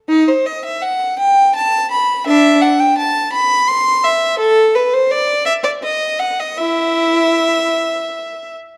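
A clear, focused solo violin, played bowed with vibrato by one player and sitting close and up front, carries this radiant, dance-like baroque-style suite movement in 3/4 with uneven, rubato beats from 0.1 to 8.5 seconds, set in a moderate recital hall reverb with a dark production, in a short cut from a longer piece.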